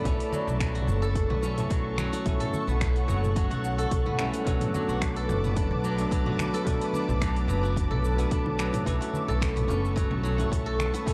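A dry, gritty hardware recording with light reverb carries this meditative, hypnotic organic downtempo passage, where a silvery, fingerpicked steel-string zither plays arpeggios through tape echo and shimmer reverb, a bell-like tine electric piano with vintage sampler grit and sidechain pumping adds accompaniment, and an ethereal, detuned pad holds mellow, chorused chords over a woody pizzicato upright bass, an overdriven deep kick, an overdriven deep house kit of metallic hats, cabasa, finger snaps and toms, and very quiet ringing congas and bongos, all moving from A to Bm7 at 4.5 seconds and back to A at 8.9 seconds.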